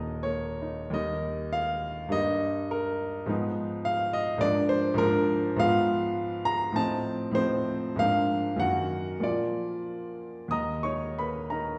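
Stormy and brooding, this romantic character piece for solo piano moves in a flexible rubato 2/4 between 83 and 108 BPM, beginning in Eb major before darkening into Eb minor at 5.6 s. The grand piano sits up front with a smooth, vintage tone, spanning Eb1 to Eb6. The recording is dark and warm, bathed in a wet recital hall reverb, and it moves into a new section at 10.5 s.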